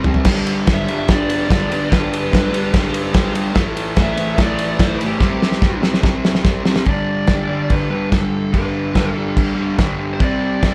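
A band playing live in one room fills a large studio with a moderate reverb, and the drums and rhythm guitar sit up front in this swaggering, rowdy garage rock excerpt in G major at 145 BPM in a straight 4/4. A cloth-damped, thuddy acoustic kit drives it with a tight kick, a medium-tuned snare, toms, and dark crash and ride cymbals, its top end rolled off. A drum fill opens the clip, and another runs from 5.2 to 6.9 seconds. The double-tracked fuzz guitar picks out a compressed, distorted riff from the start, moving through G, A5 and C5. At 0.7 seconds a quieter picked fuzz lead guitar enters, carrying a melody in a higher register over the riff. After the second fill the music returns to G, opening a new section with a raw, live-room energy.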